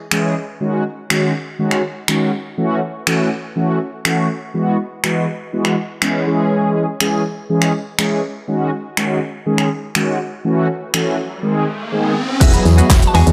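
This energetic, bittersweet dance-pop piece moves at 122 BPM in a straight 4/4. It opens with mellow synth brass, round, dark and up front, its detuned sawtooth tone shaded by ring modulation, a filter sweep, chorus and sidechain pumping. Beneath it sits a layered deep house drum kit with a deep kick, fat snare, hi-hat, shaker, handclaps, finger snaps and crash cymbal, tape-warm and re-recorded in a small room. The harmony cycles through C#m, G#7sus4, F#m7 and Eadd9, tipping to G# as an electronic riser enters at 11.3 s. At 12.4 s the arrangement fills out with a punchy FM bass up front, a smooth, warbling vintage pad, tight sequenced sawtooth arpeggios treated with phaser and delay, a twangy clean guitar riff in lush chorus, and a faint, jingly tambourine, before a woody mallet-like synth pluck sounds a short melody at 13.1 s. A moderate digital plate reverb gives the fragment its ambience.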